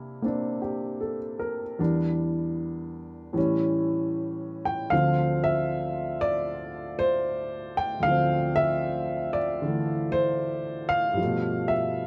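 A woody, intimate upright piano plays solo jazz with a swung feel in 4/4, its long sustain and audible action noise sitting up front in a close, detailed recording with light reverb as it moves from C9 through Em7, A7 and Dm7 to G9 in this playful, sophisticated excerpt cut from a longer piece.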